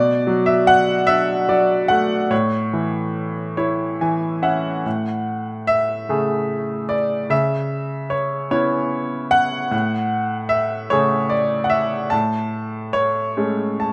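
Classical solo piano in a lyrical, peaceful mood, this short passage from a longer piece moves in a slow, rubato 6/8 at 49 BPM, settling into A major at 4.9 seconds. A bright baby grand carries everything from A2 to A5, its brilliant, intimate tone sitting up front with long sustain and audible action noise, while light reverb adds a gentle glow. The harmony drifts from Bm7 through A to Amaj7 and C#m7, with brief fills at 3.6 and 13.4 seconds easing the phrases along.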